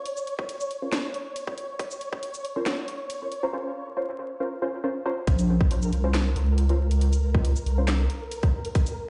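Played through a big sound system in a bare stone room, with vinyl crackle and a dulled, capped top end, this heavy, dark deep dubstep cut in Bb minor moves at 138 BPM in a half-time feel, opening on a grainy, flickering texture and a garage kit of handclaps, hi-hat, shaker and a cracking snare. A tight, up-front electronic kick and a muted, detuned sawtooth chord stab with analog chorus and dub echo join the build-up, the stab's filter sweeping until the drop at 5.3 seconds. There a deep, wobbling square-and-sine bass with chorus lands prominently beneath the kick, holding until 8.1 seconds in this short excerpt.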